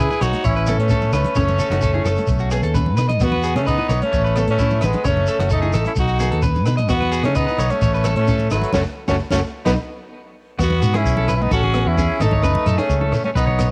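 Recorded at home on cassette in a small room, this carefree, sunny fragment of a highlife guitar band moves at a straight 130 BPM in 4/4 in E major. A raspy, growling tenor saxophone carries the melody up front, while a bright trumpet plays a second line further back and a fingered electric bass sits forward with a round, amped tone. An electric guitar on the edge of break-up picks twangy arpeggios through tape echo, and a full-bodied nylon-string guitar fingerpicks an accompaniment in the background, with finger squeak audible on its fresh strings. A grainy shekere sounds from the start, and a compact cocktail drum kit with a punchy kick, high-tuned snare and dark cymbals enters at 0.2 seconds alongside very quiet, hard-handed congas. The chords cycle through A, F#m, B and E until the band hits an accent from 8.7 seconds, and an Eadd9 opens a new section at 10.6 seconds.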